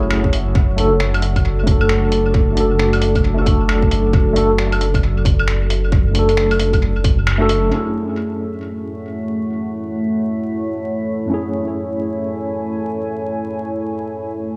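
Ghostly and nocturnal, this future garage excerpt moves at 134 BPM in 4/4 with a swung sixteenth feel, set in F# minor and cut from a longer piece. A worn, slightly out-of-tune tine electric piano sits up front throughout, its medium tremolo, combo-amp tone, gritty vintage sampler character and tape echo carrying the accompaniment over chords moving from F#m7 to D/F# and back to F#m7. Beneath it, a deep, moody ambient pad holds sustained chords with chorus and its own reverb, while a rumbling detuned saw bass and a tight electronic kick anchor the first half, the bass pumping against the sidechain along with the piano and pad. A muffled, pitched-down sampler-style kit of claves, finger snaps and low-passed hi-hat adds tape-echoed texture; the kick drops out at 7.2 seconds, and after a band accent at 7.3 seconds the kit and bass fall away by 7.7 seconds. From 8.2 seconds a faint glassy texture of drifting overtones eases in on chorus and reverb, leaving piano, pad and shimmer floating together. 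The echo-heavy mix sits in a small room with spring reverb and a veil of vinyl crackle.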